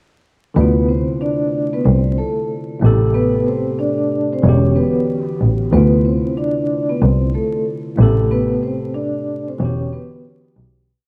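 Boom-bap hip-hop with a gritty, moody atmosphere, this short piece rides a swung 4/4 groove and settles on a single looping hook from 0.6 seconds, moving through minor ninth chords before fading out from 8.3 seconds. A dark, bowed double bass sits up front and close, one player carving a deep looped line with vibrato and expressive portamento. A worn, slightly out-of-tune tine electric piano holds spread-voiced chords decorated with grace notes, repeated like a sampled loop and filtered through cassette tape. Over it, a vibraphone played with soft mallets rings with a metallic shimmer and fast motor vibrato, tracing a short looping melody doubled in octaves, colored by analog delay and a boxy small-room character. The whole recording carries the feel of a home cassette session, with vinyl crackle and light reverb adding to its dusty, intimate texture.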